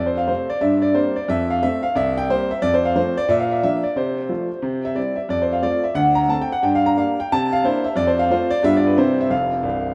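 Stride piano jazz with an exuberant, swinging mood, this short excerpt cut from a longer piece features a solo concert grand piano covering a broad span from the deep bass up into the upper register. The instrument has an intimate, somewhat boxy character, with audible action noise, long sustain and a presence that sits up front. A lush plate reverb with a long tail surrounds it, giving the impression of a listener seated further back in the room. The harmony circles around its home chord with quick turns through passing chords, a minor chord, a ninth chord and a dominant seventh before settling at the close. The swung eighth notes keep the whole passage buoyant across its roughly 9.9 seconds.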